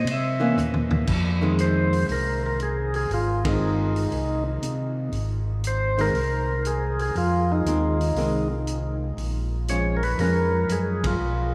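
A vast, echoing cathedral reverb surrounds this short cut from a longer soul jazz organ trio, giving its soulful, smoky swing a cavernous glow. Up front, a percussive tonewheel organ carries the melody with a full, clean tone, its second-harmonic percussion and key click turning through a slow rotary speaker. It takes a brief solo at the start before a drum fill leads into the next section at 1.1 seconds. A second tonewheel organ, round and dark with its own key click and slow rotary, holds down the bass line, while a hollow-body archtop guitar adds picked, clean electric accompaniment. The acoustic drum kit sounds dry and mid-forward, with a tight kick and dusky cymbals, and the band hits accents at 3.4 and 10.9 seconds over chords moving from C7b9 to Fm7 and later Bbm7.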